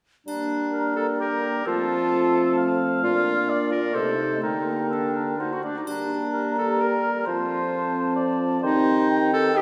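A bright, up-front clarinet, an airy flute with vibrato, a close-miked bassoon, a soft-attacked French horn section holding sustained chords and a dry triangle open this urgent, stormy fragment of a dramatic romantic orchestral movement in a rubato triple metre, with a distant, roomy oboe joining at 0.7 s and the triangle returning at 5.9 s, all set back in a reverberant concert hall.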